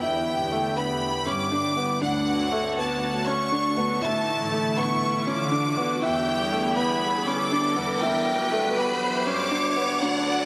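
Bathed in a huge, wet ambient reverb, this cinematic, hypnotic piano and strings electronica excerpt builds at 120 BPM in E dorian over Em7, Dmaj7 and Asus4, with a clear, up-front violin section carrying the melody, a lush, detuned and chorused pad holding sustained chords, a soft, felt-muted upright piano playing a mellow riff, a nasal bowed cello section on the bass, and an electronic riser entering at 2.1 s.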